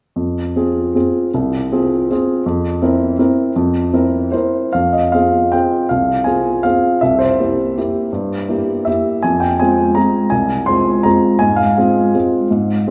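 In a 3/4 waltz feel at 140-174 BPM, pushed and pulled with rubato, a solo upright piano spans C2 to C6 in F minor, tuned to A4 = 441 Hz, with a nostalgic, elegant mood. The woody, intimate piano sits up front with audible action noise, while a 2.0-second concert-hall reverb surrounds it. The chords move from Fm to C7/F, and a new section begins at 4.7 s, circling Fm and C7 before settling on Fm/Ab as this short excerpt of a longer piece ends at 12.9 s.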